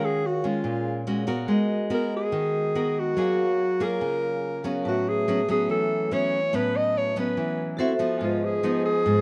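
Sophisticated and relaxed, this short bossa nova excerpt in straight 4/4 sets a breathy, mellow alto saxophone up front on the melody, its subtone and scooped notes carrying a smooth jazz top. Beneath it a full-bodied nylon-string guitar, also up front, is fingerpicked in classical style with audible finger squeak, while a bright, ringing vibraphone played with medium hard mallets adds metallic shimmer and slow motor vibrato. Light reverb surrounds the trio as rich extended chords such as D#m11, F#maj9 and A69 glide by over 9.2 seconds.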